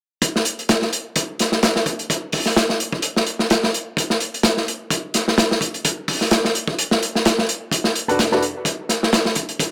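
A crunchy, saturated breakbeat kit sits up front from 0.2 s to 9.7 s, its gritty character shaped by a dark, rolled-off top, a punchy kick and a medium-tuned snare. High-pass filtering on the kick, hats, snare and room keeps the small-room acoustic sound smooth and focused, while a swung 16th-note feel gives the breaks a funky, swaggering strut. Near the end, around 8.1 s, a clear baby grand piano cuts in with brief, open stabs of short sustain over a Bm7 harmony, trailing off into a dub echo. The piano sits slightly beneath the drums but still up front, and a light reverb surrounds the whole mix. The recording is cut from a longer piece, and this brief stretch stays within a single section.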